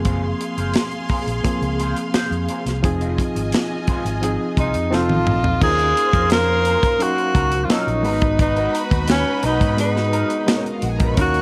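Lightly reverberant and polished, this lush, romantic 1970s-style soul excerpt sets a tight, up-front funk drum kit and a round, punchy fingered bass under a barky, overdriven electric piano with fast tremolo, a twangy wah guitar riff in the background and a clear, close string section on a second line, before a breathy, intimate tenor saxophone with tape echo takes the melody at 4.6 seconds, a drum fill arrives at 4.9 seconds, and a warm horn section adds punchy stabs from 5.6 seconds.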